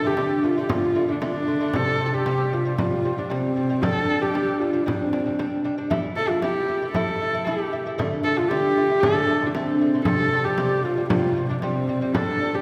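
A husky horsehead fiddle carries the melody with light vibrato, portamento and an airy bow, sitting intimate and up front, while a delicate fingerpicked lute on nylon double strings plays arpeggios beneath it. A close, dry frame drum joins at 0.2 seconds. This excerpt of Mongolian folk music in straight 4/4 feels vast and galloping, moves through D5, C5, G5 and A5 chords, and is heard in the wet reverb of a church or concert hall with a 2.6-second decay.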